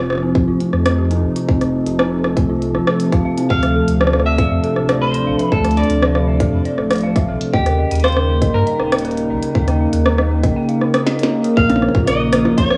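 Glitchy and cerebral, this IDM excerpt at 119 BPM pairs a hollow, flute-like pad holding sustained chords and an eerie, inharmonic FM synth bell arpeggiating through chorus, 12-bit grit and analog delay over a round sine sub bass, a tight, up-front electronic kick and a glitchy kit of clicky hats, rim clicks, blips and a tiny snare, while a clean, picked electric guitar melody with tape echo enters at 3.5 seconds. The harmony moves from F7 through Dm7 and Eb7 to Bbm after a drum fill at 11.1 seconds, all steeped in spring reverb and home-cassette haze.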